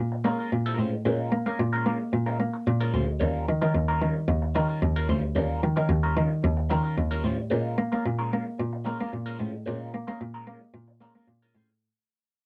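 Disco in a glamorous, sultry mood, this short cut from a longer piece moves in a straight four-beat feel over Bbm7 and Eb9 harmony. A single bowed cello carries the bass line up front, its rich tone shaped by vibrato, a soft attack and expressive portamento. Behind it, a picked electric guitar with a slightly broken-up, compressed edge plays accompaniment, colored by wah and phaser. The sound is dry and close, like a 1970s studio recording with little room ambience. After the harmony returns to Bbm7 at 7.5 seconds, the music fades out through to the end at 11.8 seconds.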